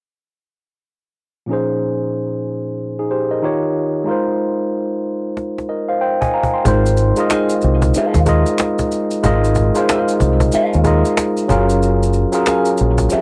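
A swung 16th-note groove at 93 BPM in 4/4 carries this soulful, smooth R&B and neo-soul excerpt in Ab major, opening at 1.5 seconds with a barky, lightly overdriven tine electric piano through a combo amp, up front and tinged with overdrive and cassette-tape character as it moves through Bbm11, Eb9 and Ab69. A woody, close and dry cajon played with soft hands enters with a drum fill at 5.4 seconds. From 6.7 seconds the music shifts to Ab mixolydian as a dark, round, punchy fingered dub bass, maracas with finger snaps and group handclaps, and soon a slightly broken-up, picked electric guitar through a small old amp with wah and analog delay join, landing on Gbmaj9, all within a lightly reverberant home cassette recording.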